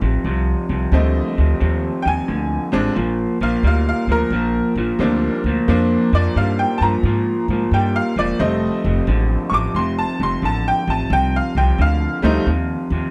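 Electric blues shuffle excerpt at 88 BPM in F mixolydian, gritty and laid-back, where a slightly broken-up, lo-fi electric guitar through a small old amp plays a low riff with warbly pitch drift over a woody, thumpy pizzicato upright bass, joined at 0.9 seconds by a jangly, metallic tack piano, all up front in light reverb as the chords move from F7 to Bb7 at 3.0 seconds and back to F7 at 8.4 seconds.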